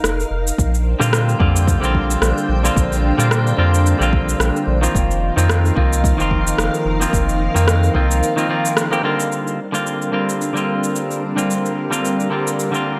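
A swung sixteenth-note groove in 4/4 sets a relaxed, smooth sunset chillout mood, carried by an electronic rim click and cabasa that are layered, overdriven and re-recorded in a large room. An overdriven electronic kick drum joins at 0.6 seconds, giving the beat a deep low end. Underneath sits a round, sine-based sub bass, up front with a fast attack and sustained notes. A silky, vintage string machine holds soft sustained chords throughout, its pulse and sawtooth tones given a slow attack, long release, phaser and ensemble chorus. From 1.0 seconds, a clean, compressed semi-hollow electric guitar plays picked accompaniment up front with tape echo. The harmony moves between F7sus4 and Bb69; after the kick and sub bass drop out just after 8 seconds, a band accent at 8.8 seconds leads into a new section of this excerpt, all under light reverb.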